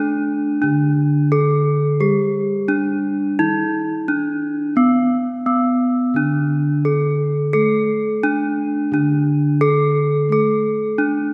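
This short cut from a longer piece sits in the generous, wet reverb of a church or concert hall, where each struck note hangs in the air for a long while. It is a serene, ceremonial gamelan passage in a steady, straight 4/4, carried by two bronze metallophones that sound together from start to finish across its 11.3 seconds. The higher instrument carries the melody, struck with a horn mallet for a bright, metallic, ringing tone that sits up front. Beneath it, the lower metallophone plays the accompaniment with padded disc mallets, giving a mellow, soft and airy colour at a gentler level, though it too sits close. Together the two tuned bronzes create a calm, ritual atmosphere, their tones blending in the resonant hall.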